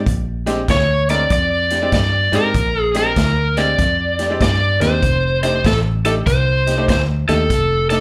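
Heard live through a club's PA with a moderate room reverb, this soulful, laid-back electric blues shuffle in Bb major swings along at 97 BPM in 4/4, moving from Bb13 to F13 at 5.0 seconds in a short cut from a longer piece. A round, foam-muted fingered electric bass sits up front from the start, joined almost at once by a natural-sounding big-band drum kit with a punchy kick, medium-tuned snare and hi-hat. By 0.7 seconds a jangly, metallic tack piano and an overdriven, up-front slide guitar played with fingerpicks have entered, the guitar carrying the melody, and both are dressed in plate reverb and slapback echo.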